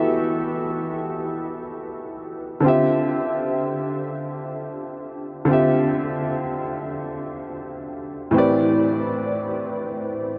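A dreamy, reverb-soaked sound wraps a solo concert grand piano, whose clear, worn tone with deep bass and short sustain sits up front inside a huge ambient space with a 7.5-second decay. This sultry, late-night R&B fragment moves slowly in 6/8 at 42 BPM in D dorian, tuned to A4 = 435 Hz, with the piano ranging from A2 to E5. Its harmony drifts from Em11 to Dm11 at 2.6 seconds and settles on Am11 at 8.3 seconds before the cut at 10.4 seconds.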